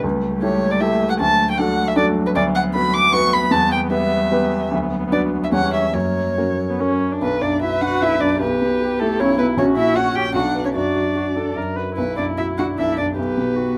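In a 3/4 at a quick 139-158 BPM, stretched and pulled by rubato, this short passage from a classical-period movement for piano quartet unfolds in B minor with a dramatic, stormy mood. A clear, polished baby grand piano sits up front with the accompaniment from the start, alongside a muted viola whose soft attack adds a shaded inner voice, while a muted cello carries a dark second line beneath. At 0.4 seconds the muted violin enters with the melody, its con sordino tone veiled yet present at the front, colored by vibrato. The harmony pushes through restless turns such as a C# diminished chord resolving to F# before the second section begins at 7.2 seconds, where it circles back to B minor and settles on a rootless Em add9 over B. Light reverb and close, detailed microphones keep each bowed string and piano note distinct.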